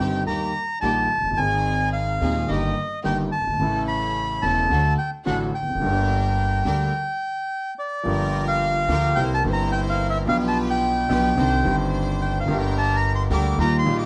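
Tango in G minor at 108 BPM with a rubato feel, passionate and tense, tuned slightly flat at A4 = 435 Hz. A reedy, mid-forward bandoneon carries the melody up front with plate reverb, over a deep-bassed concert grand piano and a woody, thumpy pizzicato upright bass on gut strings, while a soft-attack bowed string section adds floating, pure stabs lower in the mix. The harmony moves from Eb through A and D to G minor before a stop at 6.9 seconds, then resumes at 8.1 seconds with a passage through C7 and Cmadd9 back to G minor, all within a moderate studio reverb in this clip cut from a longer piece.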